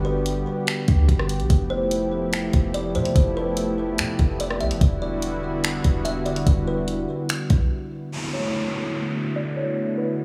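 A light reverb and digital ambience wrap this short cut from a longer piece, a blissful, dreamy slice of atmospheric cloud-rap hip hop with a half-time feel. A detuned sawtooth pad sits up front with slow-attack chords, softened by chorus and a low-pass filter and pumped by sidechain, moving from Gmaj7 to Fmaj9#11 and Em9. Above it, a close-miked kalimba plucks a short, woody melody through a low-pass filter and digital delay, while a clean, deep 808-style sine bass booms darkly underneath. From 0.3 seconds a smooth, electronic R&B kit adds finger snaps, hi-hat, rim click and a soft kick, the drums placed up front in the mix. The bass and drums drop out for a brief break at 7.7 seconds, and from 8.1 seconds an electronic downlifter and filter sweep carry the pad and kalimba onto a closing D69 chord.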